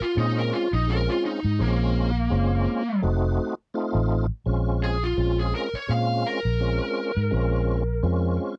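A dry, close 1970s-style studio sound frames this short cut from a longer piece, a smoky, brooding straight-eighth soul blues in Bb minor at 84 BPM with a light sixteenth-note swing, moving from Bbm7 to F7b9 at 3.0 seconds and back to Bbm7 at 4.5 seconds. A dark, overdriven, picked lead guitar through a small cranked amp solos up front throughout, over a round, punchy, foam-muted vintage fingered electric bass. A full tonewheel organ, lightly overdriven with chorus vibrato and a slow rotary speaker, comps alongside them from 0.2 seconds.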